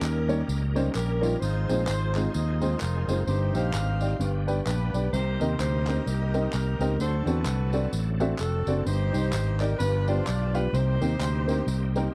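A solemn, fervent uptempo gospel passage in C minor at 129 BPM with a swung feel opens with everything at once: a warm, vibrato-laden saxophone section carries the jazz-style melody over a dark, mellow baby grand piano with audible action noise, a punchy, up-front fingered electric bass, a bright, shouting tonewheel organ sustaining chords in the background through slow rotary speaker, light overdrive and chorus vibrato, and close group handclaps with tambourine and tube shaker, all captured in a dry, close 1970s-style studio sound as the chords move from Eb7 through Cm/G and D7 to land on Cm7 at 10.7 seconds.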